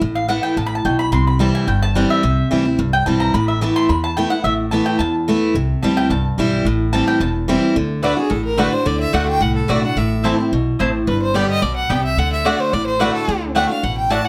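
A close, detailed recording with light reverb puts the picked acoustic guitar, mandolin and fiddle up front in this rustic, driving bluegrass excerpt, cut from a longer piece. At a brisk 217 BPM in straight 4/4 and A dorian, the acoustic guitar's concert-toned picking carries the accompaniment while the upright bass adds a woody, thumpy pizzicato foundation beneath it. The mandolin, round and double-strung, plays stabs from 0.2 seconds and takes the solo through the first pass of the section. At 8.0 seconds a single clear, focused fiddle enters on a bowed second line with light vibrato, taking over the solo as the section repeats. The harmony moves between Asus2, C and Am7 in the first half, then shifts to D, Am and G in the second.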